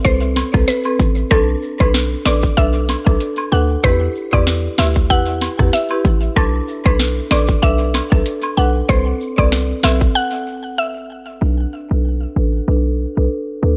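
Bouncy and sultry, this dancehall excerpt at 95 BPM in B phrygian pairs a round, woody FM synth pluck melody carrying chorus and analog delay with a band-limited rosewood marimba that gets a filter sweep from 11.4 seconds, over a tight, up-front electronic drum kit with sharp snare and metallic hats, a punchy, sine-toned 808-style bass, and a soft, saturated cabasa and woodblock layer, all set in an echo-heavy mix with light reverb and a faint mains hum, with a break at 10.2 seconds.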